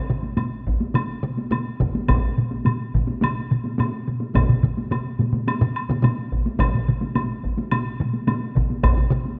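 Japanese traditional taiko drum ensemble music at 107 BPM in a straight 4/4, ceremonial and powerful, cut from a longer piece and speeding up throughout, with four taiko parts struck by hard or heavy sticks (one heavy-stick part up front in a live room, another hard-stick part also in a live room, two close and dry) joined by a woody, compressed, saturated woodblock from 0.4 seconds, the last taiko entering at 2.1 seconds, all set in a moderate concert hall reverb captured by close, detailed microphones.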